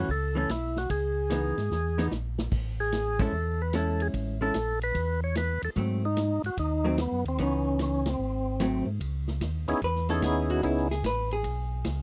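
Soul jazz organ trio in C# minor at 148 BPM, swinging in 4/4 with a late-night, soulful mood, captured as a dry, close 1970s-style studio recording cut from a longer piece. A percussive tonewheel organ with key click and slow rotary speaker carries the melody up front, while a second, round and dark organ voice handles the bass, a picked, compressed hollow-body guitar comps, and a punchy acoustic drum kit adds a fill at 1.7 seconds and band accents at 3.1 and 8.0 seconds. Chords move through F#m7, C#m9, Amaj7 and G#7b9 before the guitar takes a solo from 9.0 seconds, with the melody organ dropping out at 10.9 seconds.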